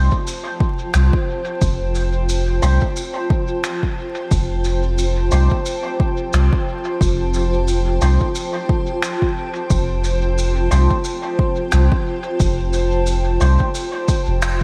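A granular cloud pad opens the recording together with the bass and guitar, playing sustained Fadd9 chords, a blurred, evolving haze with a moving notch and built-in reverb, setting a spacious, peaceful ambient dub mood in F mixolydian at 89 BPM with a gentle 16th-note swing. Beneath it, a soft dub sub bass sits deep and round up front, its tube saturation giving the low end weight, while a punchy, overdriven electronic kick arrives at 0.1 seconds. A shaker and finger snaps join at 0.3 seconds, gritty and saturated in a bright stone room that pumps, their dub echo trailing behind. An electric guitar through an envelope filter plays twangy, scooped stabs, clean and picked, dressed in lush chorus and dub echo until it drops out at 13.6 seconds. Light reverb, studio ambience and vinyl crackle surround the parts, and a band accent near the close marks the end of this passage cut from a longer piece.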